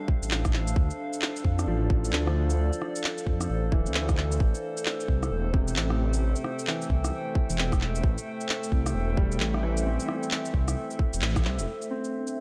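A swung sixteenth-note groove in four drives this melancholic, rainy future garage fragment, cut from a longer piece. A tight, layered electronic kick and a small-room patter of shaker, handclaps and rim click sit up front. A menacing, detuned sawtooth bass with a filter swell and tube saturation pumps against the kick. Above it, a warbling, nostalgic pad carries sustained chords through chorus, its own reverb and a gritty 12-bit sampler texture. A clear, woody upright piano sits softly in the mix, pumping as well and trailing tape echo, as the harmony moves from Dm7 to Am7 at 4.4 seconds, and the band hits an accent at 11.2 seconds before returning to Dm7 at 11.7 seconds, all within a light reverb.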